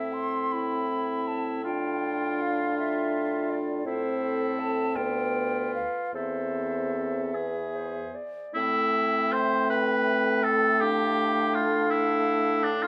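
A moderate recital-hall reverb surrounds this slow, melancholic and solemn romantic movement for wind quintet, which moves in a rubato 6/8 at about 49-56 BPM in A minor. A pure, hollow flute with vibrato carries the tongued melody over an up-front oboe second line. A warm French horn with light vibrato and a distant clarinet, entering at 0.5 s, fill in the accompaniment above a mellow, roomy bassoon bass. The harmony moves from A minor through D minor and a diminished chord to E, then returns to A minor at 8.6 s as the opening section begins again.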